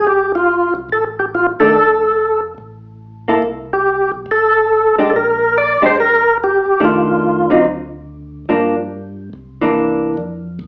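Greasy and bluesy, this short cut from a longer soul jazz organ trio tune swings at 142 BPM in F mixolydian, with a fat, lightly overdriven tonewheel organ carrying the melody up front through a slow rotary speaker and chorus vibrato, its percussion and key click biting until 7.6 s. Beneath it, a round, dark organ bass line turns through its own slow rotary, while a clean, compressed hollow-body jazz guitar picks an accompaniment from 1.6 s. The band sounds live in one room, with a small-speaker character and a large studio reverb, as the changes move from F through C and Bb to a harmonic pause before a Gm7 to C9 turnaround.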